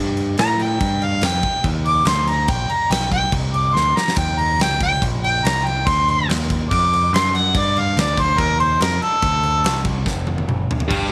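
Studio sound with light reverb opens this short excerpt of gritty, brooding blues rock and southern rock, played at 143 BPM in a straight 4/4 in G minor. A growling, overdriven electric bass is picked from the start, joined at once by a huge arena drum kit with a punchy kick, fat snare, toms and bright crash cymbals that carry an airy hall quality, and a fill near 3.8 s. A warm harmonica takes the solo, pushed through overdrive, its roomy tone colored with light vibrato and scooped notes in a jazz-inflected style. Beneath it the harmony moves from a rootless C7 through Gm7, Eb5, D and G5 to a tense D7#9, with a second drum fill closing the passage. At 10.9 s a bright, double-tracked fuzz guitar cuts in with a distorted riff just as the clip ends.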